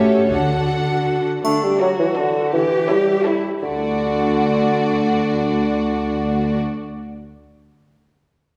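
A bell-like, delicate celesta opens this playful, whimsical film cue at a brisk 163 BPM in 3/4, sounding over bowed strings in D major before dropping away at 1.0 seconds. Two violin sections carry the tune and a second line, one smooth and lush, the other focused and close. Violas fill in the middle and cellos sit up front as the bass, each section playing with vibrato. Double basses add a brief, distant touch in the background early on. At 1.4 seconds a mellow, punchy solo bassoon enters as accompaniment, joined briefly by a dry triangle, giving the music a mischievous, magical lift. The harmony moves from D to A7 over D and back to D, and scoring-stage reverb places the ensemble further back in the room in this fragment of a longer piece.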